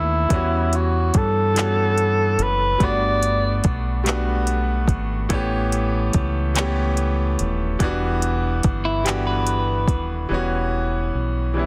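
A breathy, whispered tenor saxophone opens this slow, sultry R&B piece in 6/8 at 48 BPM. Its subtoned, scooped notes carry vibrato and a tape echo over a brilliant grand piano and a round, dark fingered electric bass, all three sitting up front. The saxophone melody falls away by 3.8 seconds, leaving the piano's chords to move through Em69, Gmaj7, A7 and Em9 in E dorian. A produced electronic drum kit arrives just after the opening, with a soft kick, metallic hi-hat and handclaps roughened by overdrive. A clean, picked electric guitar with a compressed tone and its own tape echo adds a brief second line near 8.8 seconds. Digital ambience and a dense, heavily limited modern master frame this yearning passage, which is cut from a longer piece.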